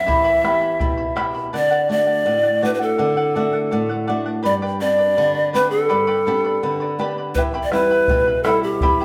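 Heard in a wet, roomy studio reverb with the ensemble playing live together, this short cut from a longer Andean folk piece carries a wistful, melancholic mood in a straight duple feel. Close-miked, up-front cane pan pipes lead the melody with a breathy tone, vibrato, tongued notes and audible chiff, while a shimmering, fingerpicked charango with double strings and a fresh-stringed flamenco guitar accompany throughout over Em, D and G. A deep, dark, saturated bombo sounds only from 0.1 to 1.3 seconds and again from 7.4 seconds to the end.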